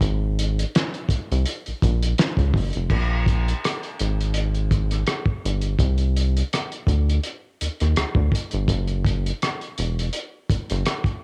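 Late-night and soulful, this neo-soul R&B excerpt moves at an unhurried 83 BPM in 4/4 with a gentle sixteenth-note swing, built from just a rubbery, hollow square-wave bass and a cloth-damped, thuddy acoustic drum kit. The bass sits up front with a resonant filter pluck and dark sustain, while the muffled kit brings a fat snare, tight kick, rim clicks, handclaps, hi-hat and dark-toned crash with a gritty, saturated character. The dry, home-cassette sound gives it an intimate lo-fi feel, and the music shifts into a new section at 2.9 seconds before the bass stops at 10.8 seconds, leaving the drums to play alone until 11.2 seconds.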